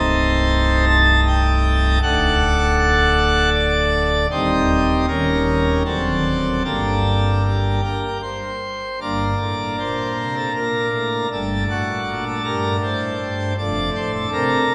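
A solemn, dark classical chorale for solo pipe organ, heard as a short passage from a longer work in a flexible, rubato triple metre. The organ sounds a full plenum with brilliant mixtures and a romantic voicing, placed up front and spanning from the deepest bass into the treble. A long, wet church reverb surrounds it, and the opening section begins again at 9.0 seconds.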